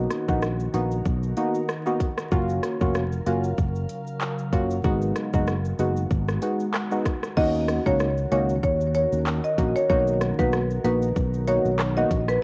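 A home cassette recording with vinyl crackle and light reverb gives this short cut from a longer dancehall piece a lo-fi, intimate sound. It moves at 95 BPM in 4/4 with a light swing on the sixteenths, and the mood is hypnotic and sultry. Up front, an electronic island pop drum kit with a tight kick, smooth hats, handclaps, rim clicks, shaker and crash is overdriven and passed through cassette tape. A growly, punchy fretless electric bass sustains low beneath a deep, mellow chord stab whose soft, evolving tone carries chorus. Behind them, a glassy, ethereal FM pad holds dark chords with ensemble chorus, reverb and sidechain pumping. The chords move from Bmaj7 through Gbmaj7 and Abm7, and at 7.4 seconds, as the harmony shifts to Ebm7 before returning to Bmaj7, a bright, woody marimba played with hard mallets enters with a close, dry melody colored by cassette tape and tape echo.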